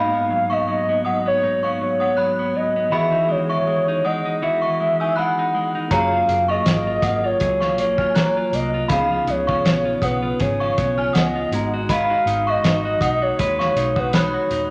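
Indie pop with a bedroom-pop haze, laid-back and nostalgic, this excerpt rides a slow, lightly swung groove over jazzy seventh and ninth chords. A warbling, detuned synth lead carries the melody up front with chorus and vibrato, joined by a chiming, inharmonic FM synth line under ensemble chorus, while a clean, compressed electric guitar with a drifting pitch wobble and a mellow tine electric piano sitting in the background fill out the harmony. At 5.9 seconds a dark, foam-muted picked electric bass and a muffled, cloth-damped drum kit with a fat snare, tight kick and gritty, rolled-off saturation enter, all set in a moderate large studio reverb.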